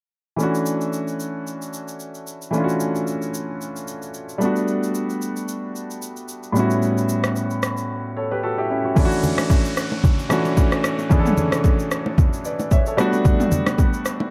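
A warm, polished grand piano sits up front in this soulful, relaxed amapiano excerpt at 112 BPM in D major, laying down Dmaj9, Gmaj9 and A13 chords over a punchy, layered deep house kit of kick, rim click, shaker and toms with a lightly swung 16th feel, while ringing, hard-handed congas and bongos join in the background at 9.0 seconds alongside an electronic downlifter, all wrapped in light reverb and a dark production.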